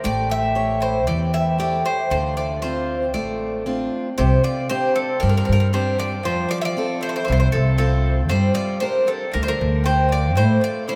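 Cool and bittersweet, this short cut from a longer Greek folk piece for a bouzouki band sets a metallic, up-front bouzouki melody over a round mandolin second line, a bright fresh-stringed steel-string acoustic guitar accompaniment and a woody, thumpy upright bass, all steeped in a vast, echoing cathedral reverb, as the harmony moves from A7 and Dm7 into a second section at 4.2 seconds that closes on an A5 chord.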